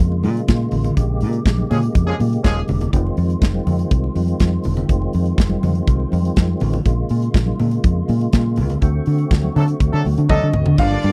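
This dry, close disco excerpt opens at 122 BPM in a straight 4/4 with a punchy, up-front drum kit, a foam-muted fingered electric bass and very quiet, bright congas, all driving and danceable from the first beat. A fat, lightly overdriven tonewheel organ holds sustained chords with key click, chorus vibrato and a slow rotary speaker. The harmony moves from Bbm7 to Fm7, back to Bbm7 and then to D7, with band accents around 1.0 and 8.8 seconds. A tight, roomy horn section punches in with octave-doubled stabs from 1.7 seconds and again near the end, while a drum fill runs alongside a short piano melody that enters at 10.3 seconds. A lush, bowed string section adds a second line at 10.8 seconds as the cut closes, giving the sound a 1970s studio character.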